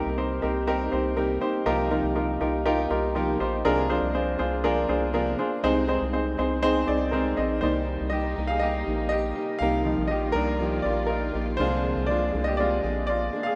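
A clear, up-front grand piano accompanies this dramatic, bittersweet piano-driven pop piece alongside a full-bodied fingerpicked steel-string acoustic guitar riff and a round, deep analog bass, then takes a solo at 7.6 seconds as a woody, dark studio string section enters with lush bowed chords in the background, all set in a lush hall reverb within a rough home demo mix.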